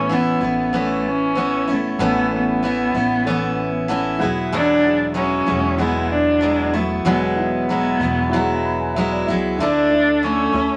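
A 95 BPM pop groove in 4/4 with a light sixteenth-note swing sets a sunny, carefree mood in this short cut from a longer piece, moving through Aadd9, Eadd9 and Dsus2. A single bowed cello carries the melody up front with a dark, woody vibrato, over a full-bodied picked dreadnought acoustic guitar and a thumpy pizzicato upright bass on gut strings. In the background, a mellow felt-muted upright piano with audible action noise adds intimate fills at 3.6 and 8.3 seconds, all set in a moderate studio reverb.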